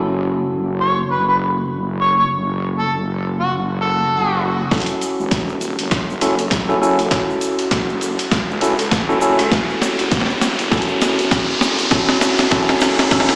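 A clean tine electric piano, played through a combo amp, opens with pumping, low-pass filtered stabs and tape echo over a heavy, saturated wobble bass on an F#m7 chord, while an overdriven, gritty harmonica takes an up-front solo melody with light vibrato and tongue slaps from 0.8 to 4.4 seconds. This playful, funky glitch hop cut moves at 100 BPM with a swung sixteenth feel, and at 4.7 seconds a pitched-down, sampler-style boom bap kit with filtered snare and hats arrives alongside a punchy layered electronic kick and a grainy egg shaker tucked in the background. From there a drum fill, an electronic riser and a filter sweep on the electric piano build toward the close, all washed in a lush hall reverb and the stony ring of a bare room heard through a small speaker.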